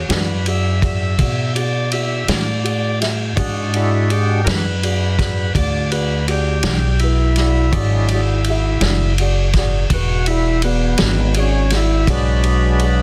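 Gritty and swaggering, this slow blues in 12/8 moves at 55 BPM with a straight feel in E mixolydian, tuned slightly below standard pitch, and opens on an E9 chord in this short cut from a longer piece. An overdriven tonewheel organ takes the solo for the full 13 seconds, its thick, full tone turning through a slow rotary speaker. Beneath it, a woody, pizzicato upright bass on steel strings sits up front, joined by a natural country drum kit playing kick, snare and ride, with a tight kick given soft clipping and a rolled-off top in a small-room sound. A dark, mellow upright piano adds accompaniment in its upper-middle register, while a clean, picked electric guitar, compressed and set in the background with tremolo and plate reverb, stops at 11.2 seconds. The mix carries light reverb and a dense, heavily limited modern master.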